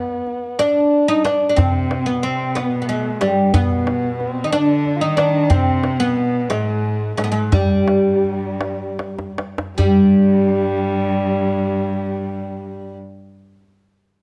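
A bright, plectrum-plucked fretless oud leads this festive Persian modal excerpt in 6/8, alongside a dark, bowed kamancheh with vibrato and portamento, a rich, focused cello second line from 1.6 s, and a deep, dry tombak played with soft hands, whose fill at 9.0 s caps a slowdown that begins at 5.5 s, heard through close, detailed microphones in a moderate recital-hall reverb.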